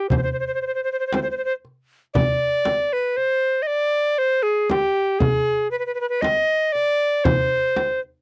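An Arabic maqam ensemble piece in a straight 10/8 metre, this short excerpt cut from a longer work carries a hypnotic, melancholic mood. An alto recorder carries the melody from the very start, moving between G4 and Eb5 with a pure, straight, tongued tone marked by a chiff and a reedy edge, close-miked and sitting up front. A darbuka and a frame drum enter at 0.1 seconds and hold the percussion through to 8.0 seconds. The darbuka has a crisp metal-shell snap played with hard hands, its sound compressed and saturated, while the large frame drum adds a deep, acoustic body with a small-room feel. The recording is dry and close, in the manner of a 1970s studio session, with little reverb around the players.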